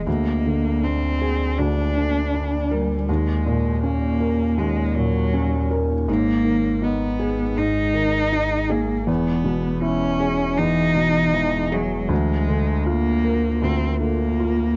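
A felt-muted upright piano sounds from the first moment of this reflective, melancholic neoclassical piece, its soft, intimate tone up front with audible action noise, while a solo bowed cello carries a second line with vibrato, a focused sound and a smooth top. Beneath them a very quiet, ethereal pad of detuned sawtooth and triangle voices holds slow-attack chords with ensemble chorus and a moving notch, and a clean sine sub bass adds deep, dark sustain. The rubato 4/4 passage moves through G#m and Emaj7 before returning to A#7/D, heard in a dry, close 1970s-style studio sound with light reverb, cut from a longer work.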